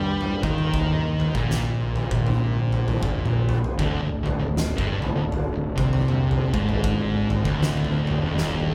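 A slow, swung 4/4 pulse at 79 BPM drives this brooding, heavy stoner and doom metal excerpt, moving from a Bb5 power chord to D5 as an oversized, low-tuned acoustic drum kit enters at 0.2 seconds with a boomy kick, fat snare and toms in a gritty, pumping big-room sound, closing on a drum fill at 8.4 seconds. Up front, a distorted fuzz guitar churns out a warm, picked riff, shadowed by a very quiet, darker second fuzz guitar playing a riff of its own, while a punchy overdriven fuzz bass sits in the background. Underneath, a very quiet tonewheel organ holds mellow, round sustained chords with key click, chorus vibrato and a slow rotary speaker, all captured as a band playing live in one room with light reverb.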